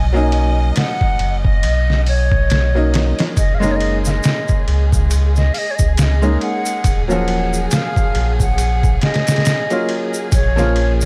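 A slow, swung 4/4 groove at 69 BPM sets a dark, hypnotic trip hop mood in this short passage cut from a longer piece. The sampler-style drum kit sits up front, compressed, pitched down and muffled, with a thumpy kick, medium-tuned snare, hi-hat and ride carrying a tape-warm character. A deep, round sine sub bass anchors the low end with a mellow, sustained tone, while a tube shaker with group handclap, vintage and band-limited, joins at 3.4 seconds. A brilliant, woody upright piano plays short-sustain accompaniment through a harmonic tremolo, and a close studio violin section holds expressive bowed chords with vibrato and portamento beneath. On top, an airy wooden flute carries the tongued, straight-toned melody, its lines trailing into dub echo over a progression of Bmaj9, Gb6, Ebm7 and Bbm.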